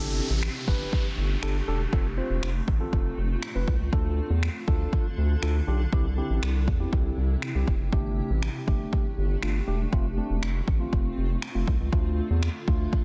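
This euphoric, summery dance-pop excerpt at 120 BPM opens with a brief electronic downlifter that ends at 3.9 seconds. Alongside it, a mellow, clean tine electric piano, a cloudy, evolving granular pad with its own built-in reverb, and a round, dark analog bass all pump under sidechain compression over a Gsus2, F, Dm, C progression. At 0.4 seconds a layered deep house kit enters with finger snaps and an overdriven, deep kick, sitting up front with the bass in a dry, dense, heavily limited mix.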